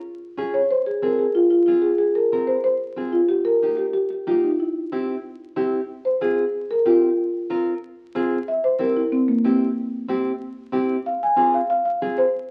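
Latin excerpt at a driving 186 BPM in F minor, turning to F harmonic minor at 5.9 s. A mellow, round soft-mallet marimba carries the passionate melody from the start and takes a solo from 5.9 s over a full-bodied, fingerpicked nylon-string guitar with audible finger squeak. Both sit up front in a large studio reverb, colored by the crackle of a very old 78 rpm record.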